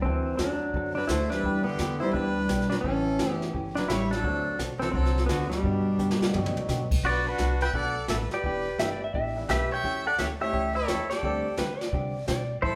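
An up-front, compressed pedal steel guitar carries the melody with fingerpicked slide lines and volume swells in this playful, swinging western swing country piece at 172 BPM, backed by a dark hollow-body jazz guitar and a slightly detuned upright piano in the background, a woody, thumpy pizzicato upright bass and a brushed drum kit with a boomy kick and a fill at 6.0 seconds, while a close, biting fiddle adds a bowed second line from 1.0 seconds and a clean lap steel guitar adds brief slide phrases from 8.8 seconds, all in a live room with wet, large studio reverb.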